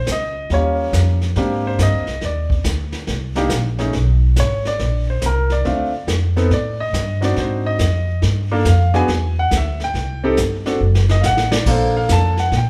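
Swinging eighths at 140 BPM in 4/4 carry this cool, late-night jazz piano trio fragment, where an intimate, clear baby grand takes an up-front solo through lush extended chords with its action noise audible, a woody pizzicato upright bass sits close beside it, and a vintage brush kit with dark cymbals and a rolled-off top enters at 0.1 s and adds a drum fill from 10.8 to 11.7 s, the band heard live together in a large studio room with moderate reverb.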